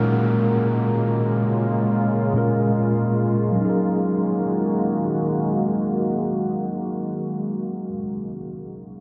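Contemporary R&B in free time and F# major, this short excerpt from a longer piece feels tender and dreamy, floating along at an unmetered pace. A mellow tine electric piano carries the accompaniment from the start to 9.0 seconds, its clean tone sitting up front and softened by a low-pass filter. Alongside it, a deep, moody ambient pad holds sustained chords until 7.7 seconds, built from detuned sawtooth unison with a sine sub octave, a slow attack and long release, thickened with chorus and its own reverb. An electronic downlifter sweeps through the opening 3.6 seconds, tucked low in the mix. The harmony moves from A#m7 to F#69 at 3.6 seconds, and the whole mix is soaked in a huge, lingering reverb that gives it a hazy, suspended atmosphere.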